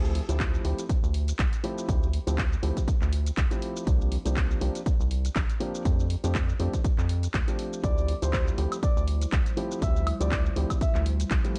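A swung 4/4 deep house groove from a punchy, tape-warm analog drum machine of handclaps, hi-hat, shaker and woodblock with vintage 12-bit grit, joined by an up-front electronic kick at 0.4 seconds, drives this smooth, deep-feeling excerpt as a rubbery, hollow square bass with tube saturation and sidechain pumping sits beneath soft, muted stabs from a felt-muted upright piano trailing tape echo over Dm11, C7sus4 and F69 chords, before a breathy flute-like synth lead with chorus and analog delay arrives at 7.8 seconds and a dark, very quiet ambient pad settles in at 9.1 seconds, all set in a dry mix.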